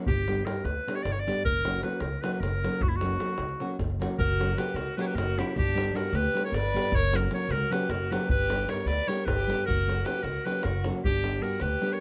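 Fiery and restless, this Balkan wedding-band excerpt drives along in a straight 7/8 at 307 BPM, alternating between G and F# chords. A bright, vintage-toned clarinet carries the melody up front in a classical style, over fingerpicked nylon-string guitar with a boxy, small sound and audible finger squeak, thumpy pizzicato upright bass, and a deep davul heard at a distance, as if from a large room. At 4.2 seconds a rich violin enters with a second line, played sul tasto with light vibrato, a soft attack and an airy bow, intimate and close, all set in light reverb through close, detailed microphones.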